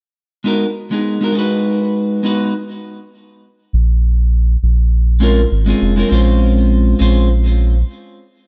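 A dark, warm production sits in a moderate scoring-stage reverb, giving this short cut from a longer sunset chillout piece a relaxed, wistful air at 101 BPM in 4/4 with a gentle sixteenth-note swing. A clean, picked electric guitar carries the accompaniment up front from 0.4 seconds, its tone dusky and trailed by digital delay over G#m7. At 3.7 seconds a round analog bass enters as the harmony moves to A#m9, deep and sustained with a fast attack and a blend of sawtooth and sine character.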